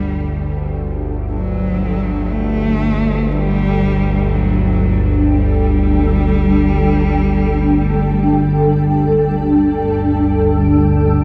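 A chorused analog drone of sawtooth and pulse waves sounds low and up front from the start of this cavernous, unsettling dark ambient excerpt in free time, together with a close, bowed cello and a barely audible metallic singing bowl with slow beating. A blurred, detuned granular cloud pad with a moving notch fades in alongside the drone over the first 9.5 seconds, its mellow sustained chords passing through ensemble chorus and shimmer reverb. A single cello player carries an expressive melody with vibrato and portamento through shimmer reverb and tape echo until 11.0 seconds, all within a dreamy mix soaked in huge reverb.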